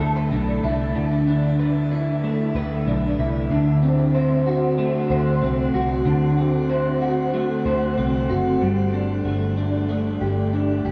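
This dreamy, blissful dream pop excerpt opens with an electric guitar and a vintage electric bass sounding together from the first moment, moving at 94 BPM in a straight 4/4 in G major. The guitar plays arpeggios, sitting up front with a slightly broken-up, picked tone that is compressed and treated with ensemble chorus and digital delay. Beneath it, the foam-muted fingered bass gives a dark, round, punchy low end, set a little further back. The harmony moves from Cmaj13/B to D7 at 3.5 seconds, then settles on Gsus2 when a new section arrives at 8.6 seconds. A moderate shimmer reverb with a long tail and a small room sound wrap the whole fragment in a blissful haze until it cuts off at 10.9 seconds.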